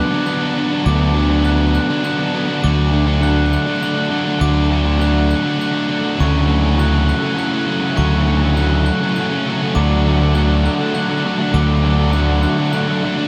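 A biting, overdriven electric guitar riff sits up front in this hopeful, cinematic post-rock excerpt in 3/4, joined at 0.9 s by a punchy, fuzz-laden fingered bass holding a low D. Behind them, a brassy analog pad with chorus sustains bold, evolving chords over a Bm7/D, D and F#m7/D progression, while a glockenspiel played with brass mallets adds sparkling, bell-like arpeggios trailed by delay. A compressed fuzz guitar riff slips into the background at 9.8 s, and the whole dreamy mix is soaked in a lush hall reverb.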